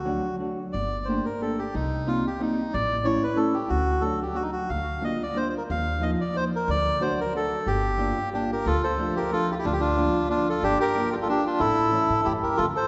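A church or concert hall bathes this short cut from a longer musette waltz in a long, wet reverb, and the top end sounds softened and slightly veiled. The mood is bittersweet and whirling, with a swung, rubato lilt in three. Up front, a reedy, smooth bandoneon carries the melody throughout, its mid-range voice sitting well above the other parts. Beneath it, a clean, fingered hollow-body electric jazz guitar supplies the accompaniment, while a woody, thumpy upright bass with gut strings plays pizzicato underneath. The harmony moves through shadowed minor-leaning chords before the music turns toward a new section at 8.7 seconds.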